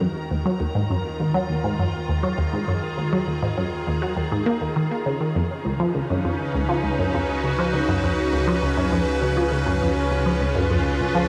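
Ambient, sequencer-driven space music in Eb minor at 101 BPM in a straight 4/4, this short cut from a longer piece feels cosmic and hypnotic, moving from Ebm to Db7sus4 at 5.4 seconds. A juicy, squelchy blip pluck carries the riff up front, its detuned sawtooth tone snapping with a fast attack and short decay while a resonant filter and moving notch give it bite, colored by chorus, phaser, delay and shimmer reverb. Beside it, an evolving wavetable pad holds sustained chords, its detuned sine voices morphing with a slow attack and long release, bright and forward under ensemble chorus, built-in reverb and shimmer. Deep in the background, a round analog bass with a nasal, dark edge sustains low notes, fading in alongside the pad across the full 11.3 seconds. A wet spring reverb and the character of a home cassette recording wrap the whole passage in their space.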